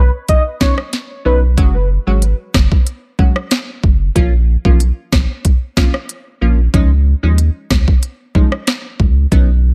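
A dry, close-sounding excerpt of tough, hypnotic dancehall at 93 BPM in straight 4/4, where a velvety, chorused synth lead with vibrato and digital delay sings only in the opening 1.4 seconds over a round, deep sine sub bass; an overdriven electronic island pop kit of knocking kick, sharp snare, rim click and crisp hi-hat sits up front, while a detuned, warbling wavetable chord stab with a moving notch filter decays through chords from Badd9 to Dbadd9.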